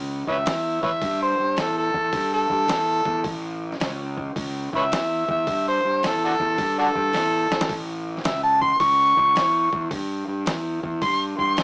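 An overdriven, amplified harmonica sits up front and carries a jazz-inflected solo from 0.3 seconds to the end of the clip, its tone gritty and warm, lightly shaded with vibrato, and peppered with tongue slaps and scooped notes. This is a raunchy, swinging slice of blues rock with a southern rock edge, played in a power-trio lineup and cut from a longer piece. A fuzzed, overdriven fingered electric bass opens alone at 0.0 seconds before the harmonica and drums join at 0.3 seconds, holding down the low end with a warm, amped fuzz tone. The drums have a sampler-style, boom bap character: compressed and pitched down, with a thumpy kick, a medium-tuned snare, hi-hat and a tape-warm sheen, plus a brief fill from 7.1 to 7.7 seconds. Light reverb and a rough rehearsal-room sound, heard as if through a small speaker, give the whole thing a dirty, lo-fi feel.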